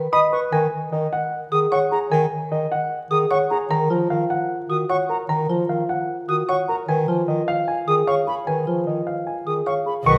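A wet recital-hall reverb surrounds this short cut from a longer classical piece in minimalist pattern style, meditative yet urgent, moving at 151 BPM in straight 4/4 over chords of B, Gbadd9, Ebm7 and Db7. An up-front concert grand piano with deep bass and short sustain carries the melody, while a woody rosewood marimba and an airy, vibrato-touched silver flute spin arpeggios above a warm, up-front bass clarinet accompaniment. At 10.1 s a bright clarinet enters in the background on a second line, alongside a dark, bowed chamber string section holding smooth sustained chords and an intimate, close double bass played by one bowed player.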